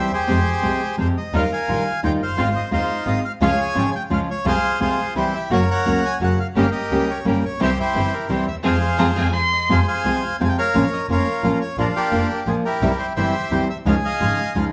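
A wet stone-room reverb surrounds this sultry, tense rubato tango in three, cut from a longer piece and played live in one room, where a reedy, up-front bandoneon carries the melody over a fingerpicked, full-bodied nylon-string guitar and a smooth bowed double bass with vibrato, while a veiled, con sordino string section adds soft-attack stabs in the background from 1.3 to 9.3 seconds and a woody, distant violin slips in a brief second line at 9.0 seconds during a band accent.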